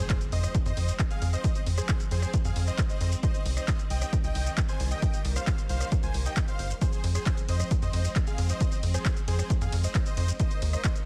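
A huge, detuned supersaw lead carries the soaring melody over lush background strings holding sustained chords, both pumping against the sidechain, while a very quiet electronic impact marks the opening of this driving uplifting trance excerpt in F minor at 134 BPM. From 0.1 seconds an overdriven, punchy layered kick sits up front with an analog drum machine supplying handclaps, hi-hat, ride, rim click and shaker, both re-recorded in a large room, and from 0.3 seconds a tight sawtooth sequencer bass with a plucked filter attack drives beneath them. The lead carries delay in digital ambience as the chords move from Fm to Cm and back, ending on Ebsus4 at 10.4 seconds.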